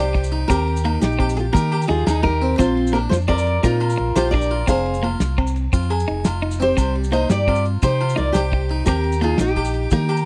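A woody, full-bodied fingerpicked steel-string acoustic guitar with old strings carries the melody up front in this bittersweet highlife guitar band excerpt, set in 12/8 at 115 BPM over a Cm, Eb, Bbadd9 and Fm progression. A round, punchy hollow-body electric bass sits equally forward, while a clean, compressed electric guitar with spring reverb picks out accompaniment and a plucked French-style harpsichord with slapback echo spins arpeggios. A damped 1970s drum kit with a fat snare, tight kick and dark ride cymbal anchors the groove, with grainy maracas and ringing, saturated agogo bells tucked in the background of a dry, close studio sound.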